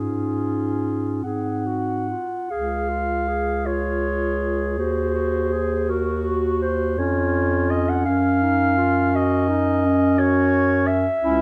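A rubato 6/8 pulse at a slow 42-58 BPM in dotted quarters carries this serene, lyrical classical fragment in Db major, cut from a longer piece, where a dark, soft-attacked clarinet sings the melody up front over a second clarinet line with a smooth top, a roomy, distant clarinet accompaniment and a mellow bass clarinet bass, all four playing throughout the 11.4 seconds under light reverb and close, detailed microphones, while the harmony moves from Db/Ab through a Cdim/Eb at 4.8 seconds to an Ebm7/Gb at 8.1 seconds.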